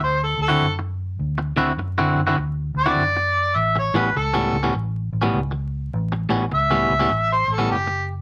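Harmonica, guitar and bass all start together in this short cut from a longer electric blues shuffle, a laid-back, gritty groove at 102 BPM in 4/4 with a swung feel, set in A mixolydian. A mellow harmonica with overdrive carries the melody as a jazz-style solo, its scooped notes and light vibrato sitting in a distant, roomy space yet still punchy and up front, moving between G4 and E5. Beneath it, an electric guitar at the edge of break-up picks a bright, twangy, compressed riff. A vintage fingered bass, foam-muted, round and punchy, adds a dark, amped pulse up front in the mix. The harmony moves from D9 to A9 at 3.6 seconds, while a moderate small-room reverb and a layer of vinyl crackle give the whole recording an aged, intimate character, with the guitar dropping out at 7.9 seconds just before the cut ends.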